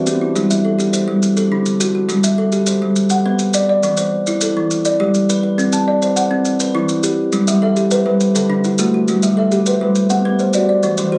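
Southern African traditional music in an mbira-style interlocking cycle, this hypnotic, rippling 12/8 passage in G major moves at 137 BPM, cut from a longer piece and captured on a phone in a room with a light club reverb. A bright, woody kalimba with a thumbnail pluck and a hollow-box ring plays up front in arpeggios throughout, while a second, softer kalimba with a mellow, airy fingertip pluck sounds briefly at the start and returns at 7.5 seconds. Close, dry maracas add a grainy texture beneath a cycle of chords that opens on Am7/G and D and ends on Bm.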